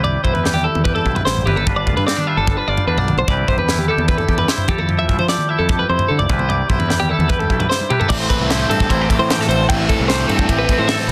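A bright, playful math rock and midwest emo passage at 149 BPM in C major opens with clean, compressed twelve-string electric guitar arpeggios up front, a twangy fingered electric guitar with a warbly pitch drift in accompaniment, a growling overdriven fingered bass, and a crisp, airy fusion kit with a high-tuned snare carrying soft clipping and a punchy kick. The chords move through Cmaj7, G7, Cmaj9 and Fmaj9 before a drum fill at 7.7 seconds leads into a new section at 8.1 seconds, where a biting, double-tracked overdriven guitar riff with phaser enters over Am7. Light reverb surrounds a dense, heavily limited modern master.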